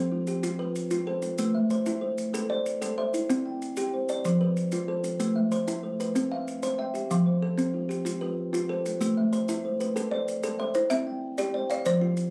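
Captured on a phone in a room with a club-like reverb, this short cut from a longer piece of southern African traditional music sets up a hypnotic, rippling mbira-style interlocking cycle in 12/8 at 126 BPM, moving through F, Am and C in C major. Two kalimbas play arpeggios throughout: one solid-board instrument, short and up front with a woody fingertip pluck, and a hollow-box one that rings out soft and airy, while mellow, grainy maracas sit close and dry from 0.3 seconds. At 10.7 seconds a rustic folk marimba with medium mallets enters with a dry, hardwood melody as the cycle turns to a new section.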